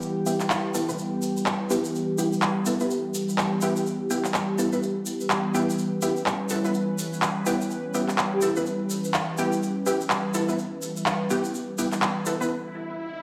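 A sub drop hits at 0.0 s as a resonant, sawtooth-rich pad begins holding sustained chords on E minor, its detuned, chorused tone evolving under a filter swell and slow attack, while a grainy, distant egg shaker ticks away in a large room. This short cut from a longer bass house piece moves at 125 BPM in 4/4 with a 60% swing on the sixteenths, and its E dorian mood is aggressive and swaggering. Close behind come punchy, orchestra-hit-like synth stabs, layered from detuned unison saws with ring modulation and a filter pluck, carrying their own built-in reverb and tape echo under a filter sweep. Up-front electronic handclaps, layered and polished, sit in studio reverb. At 8.3 s a breathy, flute-like synth lead sounds a brief G4, soft and warbling with vibrato, cassette-tape colour and lush chorus. The music breaks at 12.5 s, leaving a sub swell to close it out, all set in a wet plate reverb with digital ambience.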